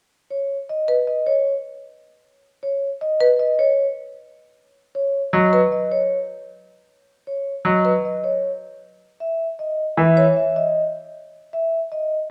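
A classical minimalist pattern piece in B major, this short cut from a longer work moves at a propulsive 155 BPM in a straight 6/4, with a bright, forward-driving mood. A vibraphone struck with medium mallets carries the melody from the opening moments, its metallic, ringing tone heard with the motor off and placed up front, carrying a vintage, band-limited character. Just under a second in, a rosewood-barred marimba joins with woody, warm arpeggios in a narrow upper register beneath the vibraphone line. At 5.3 seconds a grand piano adds low accompaniment, its brilliant, smooth sound with long sustain sitting prominently in the mix. The harmony rests on Badd9 before shifting to C#m near the close, and the whole ensemble sits in a moderate scoring-stage reverb that lends a sense of space.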